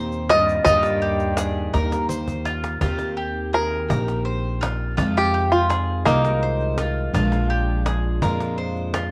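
A slow, straight 6/8 lilt at 56 BPM carries this hopeful, pastoral acoustic folk piece in Eb major, moving through Eb6, Fm7 and Bb7, as an up-front, twangy bluegrass banjo with a cassette-tape tint takes the melody and launches into a five-string banjo solo at 2.8 s, over bright picked steel-string guitar with finger squeak, double-strung mandolin arpeggios, woody pizzicato upright bass, a distant bowed cello line floating briefly near the start, a grainy egg shaker in the background until 2.4 s, and a snappy cajon whose drum fill from 2.1 s leads into the solo, heard through a home cassette recording with moderate spring reverb.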